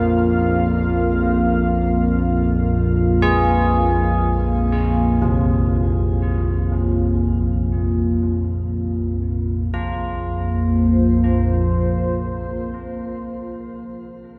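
In free time, this ominous, unsettling dark ambient drone fragment rests on a warbling, detuned analog drone low in the register and a deep, full-bodied pad of sustained chords sweetened by chorus and shimmer, while bronze carillon bells ring out arpeggios through analog delay, all soaked in a lush hall reverb that gives the mix a dreamy, unsettled haze before a new section arrives at 9.7 seconds.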